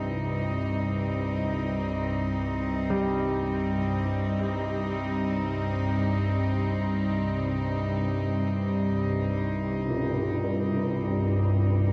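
Desolate and cavernous, this dark ambient drone drifts in free time, a short portion cut from a longer piece and centred on C minor. An organ-like drone sits up front in the low register, its detuned sine tone thickened by ensemble chorus and its own reverb, swelling in slowly and sustaining through the full 11.9 seconds. Alongside it, a close, bowed cello section holds sustained chords with a reedy, gut-string, period-style tone, while a worn baby grand piano in the background traces low arpeggios through a dub echo until 8.8 seconds. For the opening 4.0 seconds a very quiet, bright sawtooth texture bubbles high above, its resonant filter stepping at random under chorus. Near 9.9 seconds a brief tam-tam stroke from a small room, its bright cymbal tone dulled by a low-pass filter, trails off into dub echo, and a wet spring reverb washes over the echo-heavy mix.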